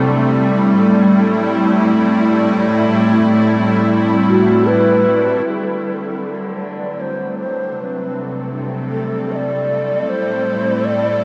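Ambient music in A dorian at 78 BPM in 3/4, melancholic and spacious, this short passage cut from a longer piece drifts through C6, Am7 and D7 harmonies. An evolving wavetable pad holds sustained chords from the start, its detuned, morphing tone bright and up front, thickened by ensemble chorus and touched with built-in and shimmer reverb. Beneath it, a chamber cello section supplies the bass line with a gut-string, reedy period-style sound that sits distant in the mix. At 4.3 seconds a breathy, hollow shakuhachi enters with the melody, its bamboo tone showing vibrato and a soft chiff, coloured by shimmer reverb and tape echo. From 5.5 seconds the pad, cellos and shakuhachi all fade in as the second section begins, and the whole recording is steeped in a huge, wet reverb with an 8.1-second tail and the worn, warbling pitch drift of old cassette tape.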